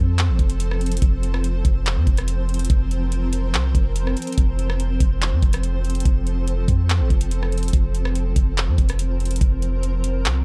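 Floating and dreamy, this atmospheric cloud-rap excerpt moves at 143 BPM in a half-time 4/4 feel, drifting between F and Bbsus2/F chords. A shimmering, ethereal pad with an octave-up sheen, detuned unison voices, chorus, built-in reverb and sidechain pumping holds sustained chords low in the mix beneath a deep, dark sine 808 bass with long decaying notes. From 0.2 seconds, an up-front electronic drum kit re-recorded in a small room adds a knocking kick, metallic hi-hats, handclaps and rim clicks, all kept fairly dry overall.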